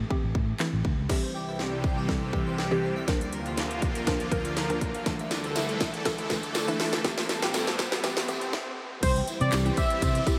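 A dreamy, reverb-soaked mix opens this energetic, bittersweet dance-pop excerpt at 121 BPM, where a house drum kit with a punchy kick, cracking snare and metallic hats drives a woody, mallet-like synth pluck with chorus and phaser, while a fingered electric bass sounds briefly at the start before dropping away. From 1.1 seconds a long build-up unfolds over C, Bb/D, Dsus2 and Am7. A lush, detuned supersaw pad, a brilliant harpsichord playing background arpeggios with delay, a very quiet riser and a distant jingly tambourine gather under a filter sweep and drum fill, and the parts carrying sidechain pumping breathe with the beat. After a brief stop, the drop lands at 9.0 seconds on C as the bass returns and a bold, retro octave-doubled lead with warbling vibrato takes the melody.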